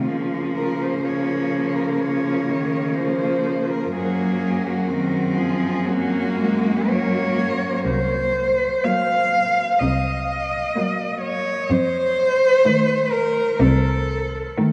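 A warm, bowed cello carries the melody up front, singing with vibrato, a soft attack and expressive portamento high in its range, in this melancholic and solemn classical piece for cello ensemble. Beneath it, a second cello holds a smooth, even inner line with rich vibrato, and a third cello shares the lead's gentle, gliding character in a low accompanying part. A focused bass cello anchors the ensemble up front, its rich tone sitting close behind the melody in presence. The music moves in a slow, rubato four, its harmony passing from Bbm/Db to Gb, then to Cm7b5 at 7.8 seconds and F7 at 11.7 seconds. The four players sound in a vast, echoing cathedral space whose long reverb lingers around every phrase in this short excerpt cut from a longer work.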